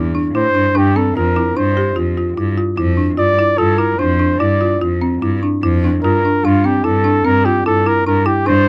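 Contemporary instrumental chamber music in 7/4 at 148 BPM, pensive and hypnotic, cut from a longer piece, where a woody, rustic folk marimba played with medium mallets spins arpeggios over a clear, smooth bowed cello bass with vibrato, while a punchy flugelhorn enters at 0.4 seconds with a classical-style solo melody, all captured dry and close with detailed microphones over chords moving from Am7 to a rootless Bb and then C/G.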